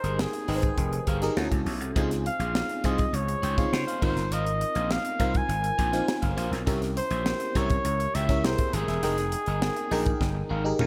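A clear, smooth-topped flugelhorn with light vibrato carries the melody up front over glassy, bell-like FM electric piano with chorus, a twangy, slightly broken-up guitar riff in the background, growly overdriven slap bass and a tight, dry funk kit with high-tuned snare and gated reverb, in this glossy, urban 1980s jazz-funk pop excerpt at 102 BPM that moves from Fm11 through Dmaj7, Ab69 and C7b9 back to Fm11 before a drum fill at 10.2 seconds.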